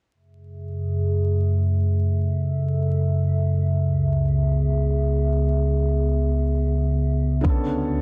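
A warbling, nostalgic pad of detuned square and triangle tones opens this ghostly, melancholic future garage excerpt in free time and F# minor, its dark, lo-fi chords sustained through chorus, built-in reverb, sidechain pumping and a filter sweep over F#m9, C#m7 and Bm9/D, until at 7.4 seconds a soft, felt-muted upright piano with audible action noise and tape echo arrives alongside a knocking, overdriven electronic kick, all under light reverb, vinyl crackle and a dense, heavily limited master.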